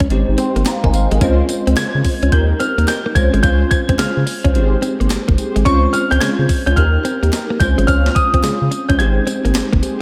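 A swung 108 BPM new jack swing groove in Ab major sets a flirty, upbeat R&B mood, with a thumpy 12-bit drum machine of kick, snare, hi-hat and tambourine up front beside a deep, saturated sub bass, a bell-like tine electric piano shimmering with ensemble chorus, a clean picked guitar riff tucked in the background, a faint crisp group handclap entering at 0.7 s, round synth brass stabs with phaser and slapback echo arriving at 1.2 s, and an intimate grand piano melody high in the treble from 1.8 s, all cycling through Abmaj7, Dbmaj7 and Eb in a lush hall reverb with a big arena sound.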